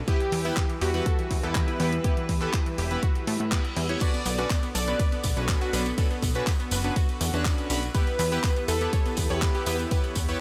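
Soft-attack bowed strings and a punchy, detuned analog bass pump with sidechain from the very start of this emotional, dreamy progressive house piece at 122 BPM; they are soon joined by an up-front deep electronic kick, a tape-warm house drum kit of handclaps, hi-hat, ride and crash, a catchy, bright unison lead with digital delay shadowed by a very quiet, lush symphonic violin section, round chorused analog pluck arpeggios in the background, and glossy retro polysynth stabs, while a reverse cymbal at 3.2 s leads into a jingly tambourine from 4.0 s as the chords move from E minor to B minor add nine and back.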